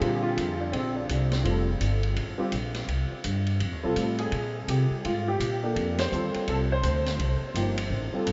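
Swinging eighths in 4/4 drive this relaxed jazz piano trio fragment, where an up-front grand piano with short sustain, ensemble chorus and diffuse ambient delay carries the melody over woody pizzicato upright bass and a vintage kit of dark hi-hat and ride with a high-tuned snare, moving through Bbadd9, Fadd9 and F9 colours to a band accent at 5.9 s, the whole mix soaked in a huge, dreamy reverb whose muffled top lends it a hazy glow.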